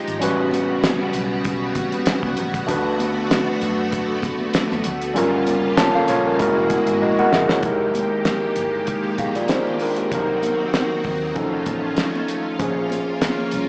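The barky, overdriven tine electric piano sits up front over shimmering, chorused string-machine violins, a round, foam-muted fingered bass, a cloth-damped thuddy drum kit with a fat snare and a drum fill at 7.0 seconds, and very quiet high-tuned congas in this smooth, bittersweet 1970s-style soul excerpt at 97 BPM, heard through a club PA with lush hall reverb as chords like A13, Gb9 and Fm11 drift past.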